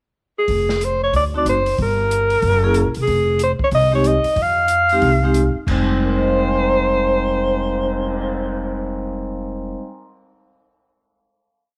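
Small-group swing and bop jazz with a moody, smoky air, this short complete piece opens with a brief pickup before settling into a single swung section and a held final chord at 5.7 seconds. A breathy alto saxophone sits up front with the melody, its subtone, vibrato and scooped notes shaping hook-like motifs with a smooth top. Beneath it, a pizzicato upright bass on gut strings gives a woody, thumpy two-feel pulse, placed close and present. The vibraphone, struck with medium hard mallets and its motor off, adds metallic, ringing syncopated comping in rootless voicings, entering at 1.3 seconds and sustaining to the very end. A dark, smooth drum kit in a small room keeps time on the hi-hat with sticks, with dim cymbals, a medium-tuned snare and a boomy kick, all under light studio reverb.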